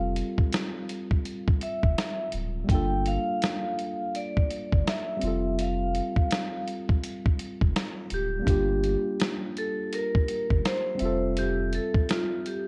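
Hazy and melancholic, this lo-fi hip hop excerpt drifts between Fmaj7 and Gm7 on swung sixteenths as a dark, ringing vibraphone with slow motor vibrato carries the filtered melody over a worn, slightly out-of-tune tine electric piano with a cassette-tape haze, a deep, round dub sub bass sitting up front, and a gritty, compressed sampler-style drum kit with a thumpy kick that joins at 0.2 seconds, all set in a dry mix with little reverb.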